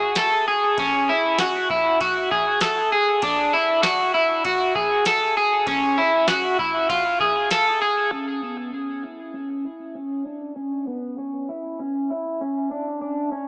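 Ethereal and hazy, this dream pop excerpt moves at 98 BPM in a straight 4/4, led by an up-front, twangy electric guitar at the edge of break-up picking arpeggios between B3 and A4 through subtle chorus, tape echo and a low-pass filter. A booming analog drum machine with a deep kick, crisp snare, ride cymbal and tambourine sits lower in the mix and drops out at 7.7 seconds, after which a filter sweep colors the guitar from 8.1 seconds to the close at 13.5 seconds. A lush hall reverb of 2.8 seconds surrounds the gritty, small-speaker sound.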